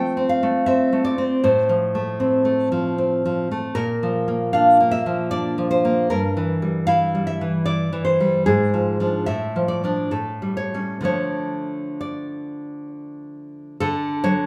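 Passionate and melancholic, this romantic piece for solo classical guitar moves in a flexible, rubato 3/4 at a slow-to-moderate pace in D minor, cut from a longer work and tuned slightly below standard pitch. The fingerpicked nylon-string guitar sits up front with a bright, fresh-stringed tone and audible finger squeak, ranging from G2 to G5 and wandering through F, B-flat and diminished colours before settling through A7 to D minor around 11.1 seconds and closing on D major at 13.8 seconds. A moderate, sizeable studio reverb gives the live room recording a spacious glow.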